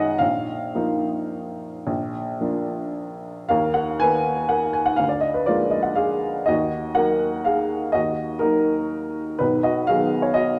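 Swaying in a rubato 3/4 at 105-132 BPM, this nostalgic, elegant classical piano waltz in Eb minor, cut from a longer piece, features a solo upright piano with a dark, mellow, woody and natural tone, placed up front in a wet recital hall with lingering reverb, as it moves from a Bbsus4 opening into a second section at 3.5 seconds that passes through Ebm and settles on B at 9.4 seconds.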